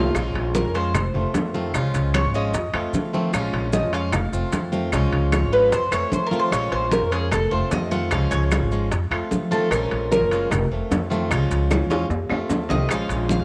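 A drum fill opens this sultry Cuban son and guajira excerpt in Bb minor at 150 BPM, as a metallic, double-strung Cuban tres launches an arpeggiated solo over a boxy, picked swing-style acoustic guitar and a thumpy, gut-strung upright bass that sits up front. Behind them, bright hard-hand congas, tight high-tuned bongos, ringing metal-shell timbales, woody claves and grainy maracas keep the percussion bed low in the mix, with another drum fill arriving around 11.7 seconds. The progression cycles through Bbm7, F7 and Db, and the whole cut carries the lush hall reverb of a home cassette recording.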